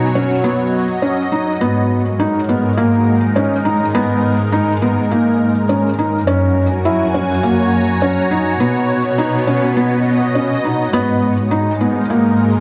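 A felt-muted upright piano, intimate and up front with audible action noise, repeats a hypnotic riff through delay and shimmer reverb over a lush, detuned sawtooth pad with chorus and phaser and a dark, bowed cello section carrying the bass with expressive vibrato, giving this moving piano and strings electronica a dusky recital-hall glow.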